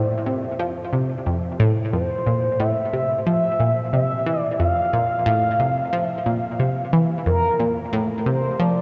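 From its opening moment, a bright, nasal analog pluck riff sits up front in the low register, colored by chorus, phaser and analog delay, while a smooth, expressive synth lead of sawtooth and triangle tones sings a sustained, vibrato-tinged melody through its own chorus and delay over an Fmaj7 chord, making this 8.8-second fragment of a longer piece a luminous, expansive stretch of ambient, sequencer-driven space music at 90 BPM in F major, steeped in a huge 7.8-second reverb and a dark production.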